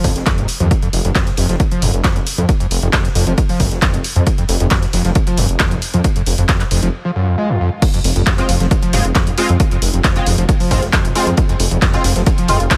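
Dry and relentless, this cut of driving peak-time techno sets an up-front punchy kick and a tape-warm analog drum machine of hi-hat, handclaps and crash over a very quiet acoustic jazz kit with a dark ride and high-tuned snare, beneath a thick, menacing detuned saw bass and a squelchy, screaming acid riff run through distortion, analog chorus and cassette tape, both pumping to the sidechain, until a background swell leads into a drop on Fm at 7.8 seconds, where an edgy sync-sweep polysynth adds nasal, chorused stabs with delay from 8.4 seconds.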